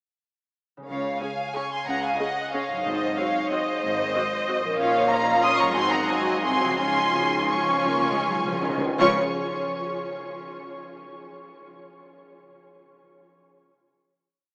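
A mellow concert harp opens this orchestral ballroom waltz in Db major at 0.8 s, its ringing rolled chords and arpeggios setting a sweeping, elegant mood in a rubato 3/4 that moves between 153 and 202 BPM. Almost at once the strings join: an up-front violin section carries the focused, smooth-topped melody with vibrato, while a second, more expressive violin line doubles the tune in thirds and at the octave. Beneath them, a lush symphonic viola section adds after-beat chords and sustained harmony, the cellos sit in the background with even bass on the beats and answers at phrase ends, and the double basses double the bass line. Timpani with medium mallets on calf heads mark single strokes on bass notes near 2.9 s and return for a fill from 6.8 s, rolling into the fuller close. The harmony moves from Db through Ab7, Bbm and Ab7 again back to Db, all bathed in a huge, echoing reverb that makes the hall sound vast even through a small-speaker tone.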